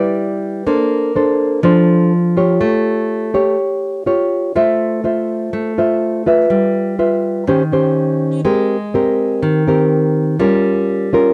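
A solo nylon-string guitar carries this short bossa nova excerpt, sitting up front with a warm, classical acoustic tone, thumb-plucked notes and the occasional finger squeak audible on the strings. The mood is breezy and romantic, moving at 123 BPM in a straight 4/4 feel, with the guitar ranging from Eb3 to E5. It opens on a rootless Cmaj9 and drifts through lush extended harmonies such as Bbmaj9, A7b13, Fmaj7/A, G6 and Eb6. At 8.4 seconds the music shifts into a new section built on Abmaj9 before settling on Gm7b5 at 10.4 seconds. Light reverb and a dark production give the playing an intimate, late-evening glow, and the passage is cut from a longer piece.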